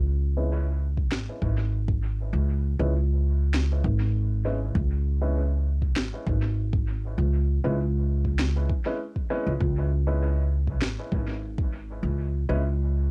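A thumpy, steel-string pizzicato upright bass opens this meditative, deep ambient dub fragment in C# minor at 99 BPM with a light swing. At 0.4 seconds it is joined by short, slightly detuned stabs from an intimate upright piano with audible action noise, run through a low-pass filter sweep, cassette tape and dub echo. From 1.0 seconds a layered electronic kick and a woody, echo-treated electronic snare, both re-recorded in a small room, arrive, and the whole cut sits dry as a home cassette recording.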